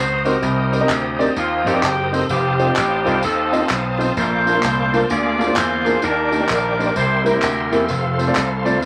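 Uptempo gospel in Bb major at 128 BPM with a swung 4/4 feel, soulful and hopeful, this short cut opens with a clear, vintage saxophone section carrying the melody with light vibrato over sustained chords from a reedy tonewheel organ turning through a slow rotary speaker with chorus vibrato and key click. A gritty, overdriven slap bass sits punchy and up front, while a grand piano adds accompaniment and tambourine, egg shaker and group handclaps join from 0.3 seconds. The progression moves from Cm7 through F7 to Bbmaj7 and Ebmaj7 before landing on F, all in a moderate studio ambience dusted with vinyl crackle.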